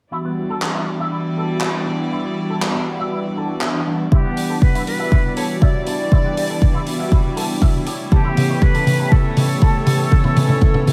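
Round, detuned synth brass with sidechain pumping opens this groovy, cosmic nu-disco excerpt alongside a reedy, gut-string chamber section and a twangy, envelope-filtered electric guitar riff; a roomy soul drum kit with handclaps, hi-hat and toms joins at 0.6 seconds, and at 4.1 seconds an airy concert flute melody and a punchy, up-front electronic kick arrive for a build-up and drum fill, as the harmony moves from Em7 to A7 in a dreamy, reverb-soaked mix.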